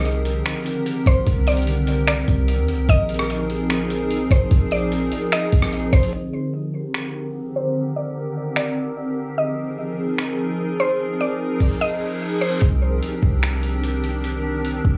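A half-time groove in 4/4 drives this hazy, spacious excerpt of atmospheric cloud-rap, carried by a gritty, pitched-down boom bap sampler-style kit of thumpy kick, hi-hat, rim click and finger snaps that sits up front with a compressed, large-room character. Beneath it, a deep, boomy 808-style bass with a sine core and a faint noise layer drops out at 6.1 s and returns at 12.6 s. A glassy, ethereal FM pad holds sustained Cm9 and Bb9sus4 chords with a slow attack and long release, its ensemble chorus and built-in reverb giving it a mellow glow as sidechain pumping moves through it. Over this, a woody, round mallet-like pluck picks out a small melody through chorus, low-pass filtering and analog delay, while a filter sweep colours the middle passage. An electronic reverse cymbal at 12.0 s leads into the final stretch, all set in a damp, small booth ambience with a faint mains hum.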